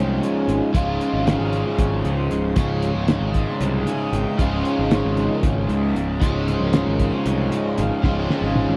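A dry, close, 1970s-style studio sound with light reverb frames this hypnotic, kaleidoscopic psychedelic rock excerpt in 7/8 at 230 BPM (eighths), holding on Db major. A reedy, breathing pedal harmonium takes the solo with sustained chords, over a biting, double-tracked overdriven guitar riff with flanger, a dark, round fuzz bass up front, and a bright, buzzing tanpura drone shimmering in the background. A muffled, cloth-damped drum kit with a fat snare and tight kick comes in at 0.2 seconds and plays a fill from 8.0 seconds.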